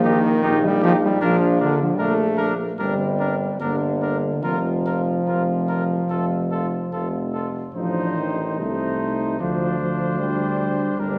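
From the opening moment, this short cut from a classical brass quintet piece sounds triumphant and noble at a flexible, rubato 74 BPM in 4/4. A warm trumpet with light vibrato carries the melody over a soft-attacked flugelhorn second line, while a close-miked trombone sits up front and a dark, smooth French horn stays in the background of the accompaniment, and a clear tuba anchors the bass up front, all heard from further back in a reverberant recital hall.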